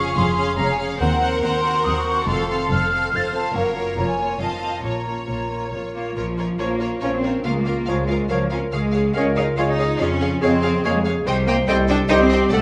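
Cinematic, playful film cue in Bb minor at 141 BPM in 3/4, cut from a longer piece, with a quirky, magical air as lush, vibrato-rich violin sections carry the melody and a second line over a smooth viola accompaniment, a ringing harp's arpeggios in the background, and a deep cello and double bass foundation, while an airy, crisp-attacked flute group adds its own line. At 6.6 s the texture thickens as a clear solo clarinet and a mellow oboe join with second lines, a very quiet vintage bassoon fills in accompaniment, and a dark, distant French horn section sustains chords. The whole cue sits in a wet recital hall reverb, moving through chords such as Gbmaj7, F7 and Bbm before settling on Cm.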